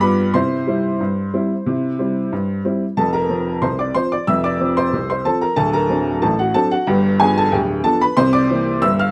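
A clear, woody upright piano carries this lively, cheerful ragtime fragment on its own, its worn, slightly detuned tone sounding boxy and up front with long sustain and a light reverb around it. At 92 BPM in a straight 2/4 in F major, it ranges from D1 to F6. Cut from a longer piece, it moves from C to F at 3.0 seconds, then through D7 and G7 to C7 at 8.2 seconds before the cut at 9.1 seconds.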